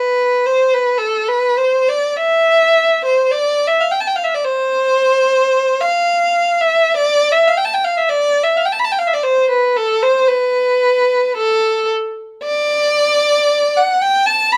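Flowing in a free, rubato 4/4, this classical fragment for a single unaccompanied violin unfolds at an unhurried pace with a nostalgic, serene mood. The bowed violin sings with a rich, smooth tone and vibrato, its line staying in a middle-to-high register and sounding even and expressive from start to finish at 14.6 seconds. Close, detailed microphones and a nearly dry room keep the instrument up front and intimate.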